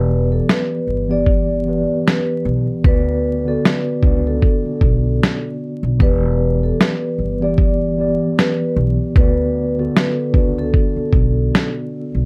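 A dark, hazy mix with vinyl crackle and a small-room ambience frames this nostalgic lo-fi hip hop passage, swung at 76 BPM in E dorian as the harmony moves between Em7 and D6. A mellow tine electric piano, colored by cassette tape and a low-pass filter, and a woody gut-string upright bass played pizzicato sit up front, while a ringing, metallic vibraphone with soft mallets and medium motor vibrato carries a filtered melody a little further back. A compressed, sampler-style drum kit with a muffled, thumpy kick and a medium-tuned snare enters at 0.5 seconds and stays up front until 11.7 seconds.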